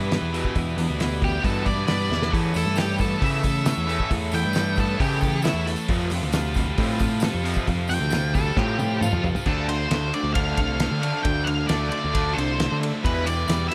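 A straight 4/4 indie rock groove drives this cool, restless excerpt, with a cloth-damped drum kit delivering a fat snare, tight kick, dark cymbals and fills at 2.1 and 8.6 seconds, and a growling, overdriven picked bass sitting up front. A raw garage guitar and a scooped high-gain guitar play riffs through dub echo, while an octave-fuzz lead guitar solos from 1.2 seconds over chords moving from Em through Aadd9/E and Fadd9 to Dm7. A very quiet sweeping pad with ring modulation and a filter swell holds sustained chords beneath, and a jingly tambourine sits in the background of a mix with little reverb but heavy echo.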